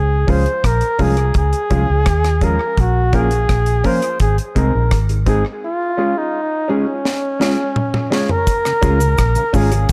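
A small, echo-heavy room frames this laid-back, uplifting roots reggae excerpt in Db major, moving at 84 BPM in a straight 4/4 and cut from a longer piece. Up front, a mellow, punchy flugelhorn carries the solo melody with vibrato and scooped notes, its line trailed by tape echo, while a dark, round, foam-muted fingered bass sits equally forward underneath. A clean, fingered electric guitar adds dark accompaniment through tape echo, and a woody, slightly detuned upright piano places stabs in the background over chords moving from Db through Bbm and Ab back to Db. The dry acoustic kit, with its high-tuned snare, tight kick, rim clicks, hi-hat and toms passed through analog delay, drives a break from 5.6 seconds that includes a drum fill. At 8.5 seconds a new section brings in a background cabasa with tube shaker and group handclaps, joined moments later by a very quiet, flute-like tonewheel organ with key click and slow rotary swirl.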